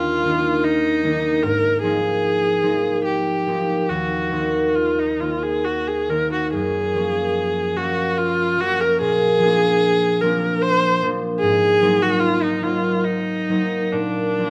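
This is an impressionist classical duo for viola and harp, luminous and dreamy, moving in a rubato 3/4 at roughly 66-77 BPM and tuned to A4 = 442 Hz. A single bowed viola carries the melody between D4 and C5 for the full 14.5 seconds, its tone rich and focused, with vibrato. The concert harp accompanies throughout, fingerpicked across a range from Eb2 to Eb4, with a mellow, ringing acoustic sound. Both instruments sit up front, caught by close, detailed microphones with light reverb. The harmony drifts from Ebmaj7 with its third omitted through Ab69, Ebm6 and Gbmaj7 before settling between Bbadd9 and Ab9, and the excerpt ends on Bbadd9 as part of a longer piece.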